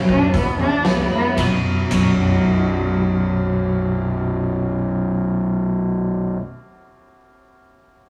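A rough rehearsal-room recording with a small room's reverb frames this short cut from a longer quiet-loud alternative rock piece in B major, moving at 112 BPM in a straight 4/4 with a bittersweet, cathartic mood. A dark, woody cello enters up front at 0.1 seconds with a bowed solo full of vibrato and portamento, its nasal, boxy tone carrying the melody through a slowing passage until 1.4 seconds. Beneath it, a bright, twangy twelve-string electric guitar plays clean, compressed arpeggios with tremolo, while a fuzz-drenched picked bass, overdriven and punchy, enters early and sits close in the mix. An oversized, low-tuned acoustic drum kit pumps in a big room with a boomy kick, fat snare, dark cymbals, hi-hat and ride, its gritty, saturated sound falling away at 2.1 seconds. The harmony moves from E to B as the second section arrives, and guitar and bass carry on together to the end of the cut at 6.4 seconds.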